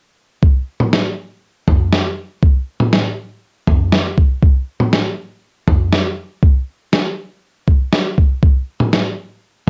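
Recorded at home on cassette and set in a wet studio reverb, this brief pop fragment has a melancholic, nocturnal air at a straight 120 BPM in 4/4. A lo-fi sampler-style drum kit sits up front from 0.4 to 9.7 seconds, its kick, snare and toms compressed, pitched down and muffled with cassette tape coloring, as if re-recorded in a small room. A thumpy kick and a medium-tuned snare give the kit its character.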